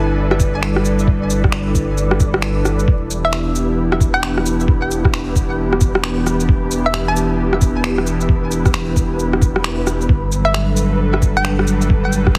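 A nocturnal, ghostly future garage excerpt in E minor at 133 BPM opens with an airy, breathy pad holding sustained chords, a round sine sub bass and a flickering, grainy texture in the background, while a hollow square pluck sounds only briefly. Within the first second, an overdriven electronic rim click, shaker and finger snaps arrive, joined by a muffled, thumpy, pitched-down kick that sits loudest in the mix, on a 4/4 groove swung at 62% on the sixteenths. The up-front pad is vintage and warbling with chorus, and it pumps under sidechain along with the deep, mellow sub bass. The nasal, bouncy, detuned pluck returns with chorus and delay to carry the melody from 3.2 to 7.5 seconds and again from 10.4 seconds. The chords move from G to Em7 and later to Gmaj7, all heard through a heavily compressed radio sound with vinyl crackle and light reverb.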